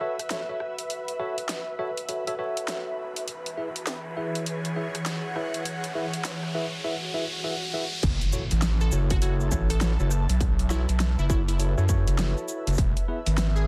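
Glitch hop at 101 BPM in F# minor, this gritty, swaggering excerpt swings its sixteenths and moves between F#m7 and E, with vinyl crackle over a dense, heavily limited master. It opens on clean tine electric piano stabs, roughened by vintage 12-bit sampler grit and pumped by sidechain, then filtered and thrown into dub echo, over an ethereal airy pad with ensemble chorus and its own reverb. A dubstep kit with a huge snare and bright hats, high-passed and placed in studio reverb, drives the build-up, while an electronic riser and swell climb toward the drop at 8.0 seconds. There an impact hits, a distorted, tape-warm electronic kick enters, and an aggressive, saturated synth bass with oscillator sync pushes up front with overdrive. From 8.8 seconds a catchy, detuned unison lead with a filter pluck, moving notch and vibrato sits mellow in the background, trailing dub echo.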